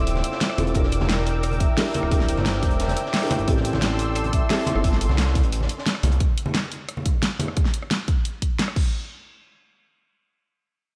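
A dreamy, rolling liquid drum and bass excerpt opens on a drop where a soft, felt-muted upright piano with audible action noise and a dark vibraphone with medium mallets share a diffuse ambient delay, over a lush, detuned unison pad with chorus and a smooth, up-front synth bass moving through Dm9, Em7b5 and Am7. Within the first fraction of a second, a pop drum kit with a fat snare, rim clicks and crash, a gritty, saturated breakbeat kit in the background and distant, ringing congas come in, and a punchy layered electronic kick joins at 0.8 s. The piano and vibraphone stop at 4.9 s, and after the pad, bass and breakbeat kit drop out at 6.2 s, the kick and pop kit carry on in a small, lightly reverberant room, with the congas continuing until 7.5 s.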